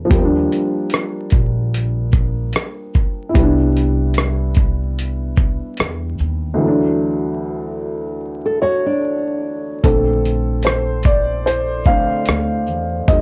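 A dark, mellow upright piano with audible action noise and a woody pizzicato upright bass open this cosy, nostalgic lo-fi hip hop excerpt at 74 BPM in a swung 4/4, joined almost at once by a gritty, compressed sampler-style drum kit with a thumpy kick, rim click, hi-hat and shaker. A fingerpicked classical nylon-string guitar adds a brief second line from 8.5 to 9.8 seconds, after which the piano takes a solo over a Bbmaj9 chord. The piano carries a cassette tape haze and the bass a tube-saturated edge, while the whole recording sits in light reverb with vinyl crackle and warbling tape pitch drift.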